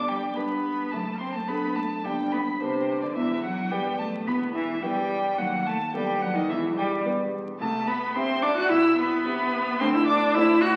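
Heard through the crackle of a very old 78 rpm record in a reverberant recital hall, this cheerful, graceful classical-period movement for piano trio moves briskly at 108 BPM in G major, with a rich, vibrato-laden violin carrying the smooth, even melody up front, a focused bowed cello with a smooth top singing the second line beside it, and an intimate grand piano, its action noise audible, supplying the accompaniment throughout this short fragment cut from a longer piece.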